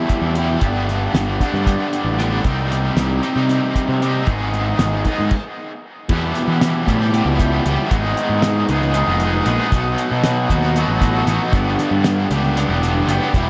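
Psychedelic rock in an odd 7/8 metre, this excerpt from a longer piece feels mysterious and dark as its straight pulse cycles through shadowy minor chords like Em, Cm and G#m. A cranked stack guitar opens at 0.0 s and carries the riff, bright and overdriven, double-tracked and placed up front, with a harmonic tremolo shimmer and tape echo trailing its picked lines. A fuzz-laden picked electric bass joins almost at once, its warm, direct-and-amped tone growling from low E upward beneath the guitar. The cloth-damped drum kit sounds dry and thuddy, with a fat snare, tight kick, dark cymbals and a rolled-off top, its hits also carried by tape echo. A stop between 5.3 and 6.1 s breaks the momentum before a second section resumes on Em and moves through G#m, B and G, all set in an echo-heavy mix with light studio reverb.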